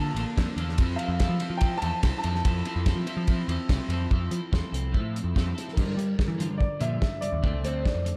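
Light reverb and small-room ambience surround this bittersweet, moody indie rock fragment at 144 BPM, where a clean, compressed, double-tracked twelve-string electric guitar riff and a dark, woody upright piano melody with analog delay sit over a growling, overdriven picked electric bass, joined at 0.2 seconds by an up-front, cloth-damped acoustic drum kit with a fat snare, tight kick and dark cymbals, as the harmony moves from Bbmaj7 and Fmaj7 to Gm7 and Dm7.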